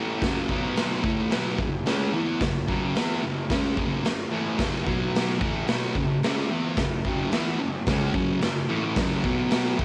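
Raw and rowdy, this garage rock clip is cut from a longer piece and runs at 110 BPM in a straight 4/4, tuned slightly sharp to A4 = 441 Hz. An up-front, double-tracked fuzz guitar picks a thick, distorted riff between F#5 and B5 power chords across F#2 to E4, with a cassette-tape grit. At 0.2 s a saturated drum kit joins with hi-hat, a punchy kick and a medium-tuned snare, sitting in a bright stone room with a pumping feel and a rolled-off top, all wrapped in light reverb on a home cassette recording.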